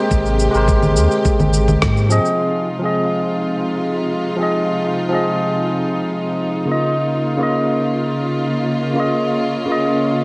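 Sunset chillout in F minor at 105 BPM, with a warm, smooth mood. A barky, lightly overdriven tine electric piano with digital delay plays over up-front, intimate bowed strings with vibrato and a soft attack, moving through Abmaj9, Fm7 and Db69 chords in a moderate plate reverb. A round sine sub bass, a gritty, thumpy overdriven kick, and compressed shaker, congas and rim click drive the opening until a band accent at 1.8 seconds, after which the rhythm section drops out by 2.4 seconds, leaving the piano and strings to carry the music through to 10.2 seconds.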